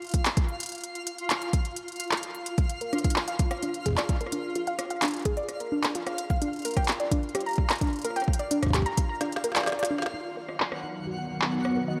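A straight 4/4 IDM pulse at 129 BPM is driven by a deep, overdriven electronic kick and an up-front organic electronic kit of woody snare, smooth hats, rim clicks and handclaps, while a twinkling granular texture with an octave-up shimmer glimmers from the start. From 2.8 s a warbling, lo-fi pluck carries dark, detuned arpeggios over Bb and Gm in a glitchy, melancholic mood, and the kick drops out at 9.2 s for a drum fill. At 10.1 s a band accent on Bmaj7 launches a filter sweep on the pluck, and a blurred, cloudy granular pad enters at 10.8 s as this fragment of a longer piece closes.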